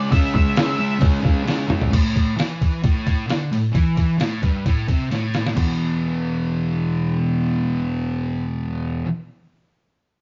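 Swaggering and raw, this 132 BPM garage rock excerpt in E mixolydian opens with a dark octave-fuzz lead guitar playing a high melody on E5 for its first second beside an up-front, double-tracked fuzz guitar riff that moves from C#m to A5 to E5, while a muffled, pitched-down sampler-style drum kit with a thumpy kick, medium-tuned snare, hi-hat, toms and crash throws in fills at 1.5 and 5.1 seconds before dropping out at 5.7 seconds, leaving the riff alone in a rough rehearsal-room sound with stone room reverb and saturated, dull highs.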